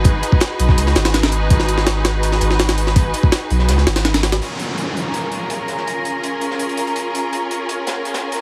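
An overdriven, pitched-up jungle sampler kit with a thumpy kick and high-tuned snare drives this atmospheric, raw drum and bass excerpt at 165 BPM in Bb phrygian, joined through its opening drop by a round dub sub bass, lush bowed symphonic strings holding Abm7 then Bbm7, and a quieter, dark breakbeat kit with saturated hi-hat and snare. At 4.4 s the sampler kit and sub bass stop, leaving the strings and breakbeat under an electronic downlifter, while from 5.0 s a reversed, granular, dreamy texture shimmers high in the background. The recording sits in a small, lightly reverberant room with a heavily compressed radio sound and vinyl crackle.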